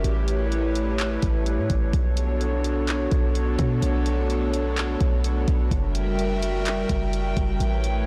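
Ethereal and melancholic, this short cut from a longer atmospheric cloud-rap hip hop piece moves at 127 BPM in a half-time 4/4 feel in B minor, where an airy, breathy pad with chorus and sidechain pumping holds sustained chords over a deep, boomy 808-style bass with tube saturation, a smooth, tape-warm electronic R&B kit of knocking kick, warm hats and handclaps that stops at 7.9 seconds, and a very quiet, dark, wind-like tuned noise texture, all set in light digital ambience within a blown-out, overdriven recording as the harmony shifts from A7 to Bm9 to F#7b9.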